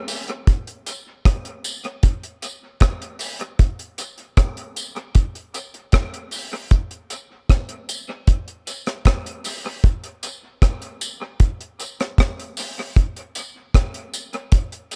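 Reggae groove in a sunny, warm mood, cut from a longer piece and built entirely from percussion. A deep reggae drum kit sits up front for the full 15 seconds, its hi-hat, tight kick drum and rim click sounding acoustic and dry, with dub echo trailing the hits. A tambourine runs alongside it throughout, set much lower in the mix, carrying a compressed, saturated character with touches that recall a tube shaker and group handclaps. The straight 4/4 feel stays steady across the single section. The room adds little reverb, but the mix leans heavily on echo, giving the kit a spacious, repeating tail.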